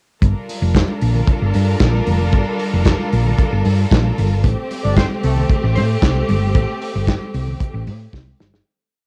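A driving, glamorous disco groove starts at once, built on a warm soul drum kit playing a four-on-the-floor beat, with open hi-hats on the off-beats and a snare layered with handclaps, its dark, rolled-off top sitting up front with a cassette-tape tone. Beside it, a round, amped hollow-body electric bass plays a syncopated line with slides, also prominent in the mix. A clear, lush string section holds bowed sustained chords with vibrato, colored by cassette tape too, while very quiet, high-tuned congas add a soft-handed syncopated pattern and the harmony shifts from Gm9 to Am7. At 4.8 seconds a mellow, smooth-topped horn section enters with brief, tight stabs in octave doubling. The groove fades out from 6.5 seconds and closes on a drum fill at 8.1 seconds, all set in a small-room, home-recorded cassette ambience.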